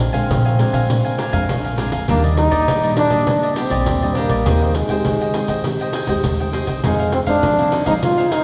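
This samba and choro piece moves at a lively 101 BPM in straight 4/4, in Eb major, with a yearning, spirited mood. A breathy trombone carries the melody up front as the soloist, its soft attack, vibrato and smooth top giving the jazz-style line a warm, singing quality. Beneath it, a crisp, picked cavaquinho and a thumb-plucked classical nylon-string guitar supply acoustic accompaniment. A woody, thumpy pizzicato upright bass anchors the low end before dropping out at 8.1 s, while a close, jingly pandeiro played with hard hands drives the rhythm. The harmony moves through Bb9, Ebmaj7, Abmaj7/Eb and Fm7, and the whole group sits in the lush reverberance of a church or concert hall, cut from a longer performance.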